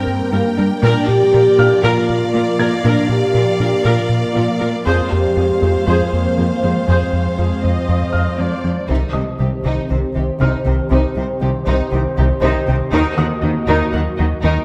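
A mellow French horn section holds soft-edged sustained chords at the front of this vast, tense cinematic score, a clip from a longer piece that blends orchestra with electronics. Beneath it, a round, deep analog bass carries a dark riff, while an airy, breathy pad with chorus sustains chords and a cello section anchors the low end from the background. Bowed violas add lush accompaniment, a distant violin section plays a second line, and a very quiet, tine-like synth pluck spins arpeggios. A felt-muted upright piano with tape echo adds intimate texture, dropping out between 4.9 and 8.1 seconds. At 8.9 seconds a new section begins: a focused violin melody enters alongside a bright double bass section, a filter sweep runs to the close, and the harmony moves through minor chords. The whole piece sits in a wet recital hall reverb.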